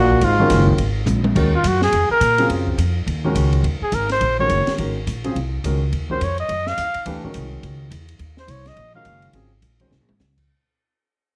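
Modal jazz at a brisk 210 BPM swing, hypnotic and intense, cut from a longer piece and circling between Absus2 and Ebm chords. An up-front trumpet with a clear tone, vibrato and scooped notes carries the melody and launches a solo at 1.4 seconds, while a close-miked, soft-attacked trombone voices a brief second line that stops at 0.7 seconds. Woody, thumpy pizzicato upright bass on gut strings, a natural-sounding grand piano with short sustain, and an acoustic drum kit with dark cymbals, a high-tuned snare and boomy kick fill out the band in light reverb as the recording fades out.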